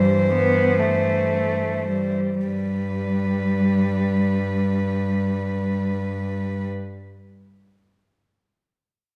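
Four bowed cellos begin together at 0.0 s in this lyrical, warm classical fragment for cello ensemble, cut from a longer piece and set in G major in a rubato 12/8 at 33-42 BPM, counted in dotted quarters, with tuning at A4 = 438 Hz. The top cello carries the melody between B4 and C5 with a warm tone, light vibrato and a sul tasto softness. Beneath it, a dark-toned second cello moves between G3 and B3 with vibrato, an airy bow and a smooth top. A rich-sounding accompaniment cello sits very quietly between E3 and G3, while the bass cello holds G2 with a gentle, breathy bow. The tempo slows over the opening 2.5 s as the harmony moves from C/G to G, and at 2.5 s a new section begins, with all four cellos stopping at 6.7 s. Each player sounds close and intimate, with soft attacks, and the wet reverb of a scoring stage adds a 1.5-second glow around the group.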